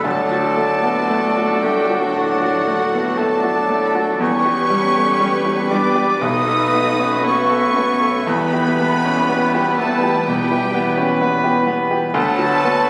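Heard through a phone in the room, with a club-like reverb over a moderate stage ambience, this brief cut from a longer romantic movement for piano and orchestra moves at a slow, rubato 56-64 BPM in 4/4, brooding and tragic as it passes from D through E minor and B7. An intimate, up-front baby grand carries the melody, its action noise audible, while a warm, vibrato-rich violin section also sings a melody high above it. Airy flute, distant oboe, bright clarinet and a very quiet second violin section weave second lines. Beneath them a mellow bassoon and a lush viola section accompany, dark horns and a clear trombone section sustain chords, a soft-edged trumpet adds background stabs, rich cellos and distant double basses hold the bass, and hard-mallet timpani enter barely audibly at 6.2 seconds.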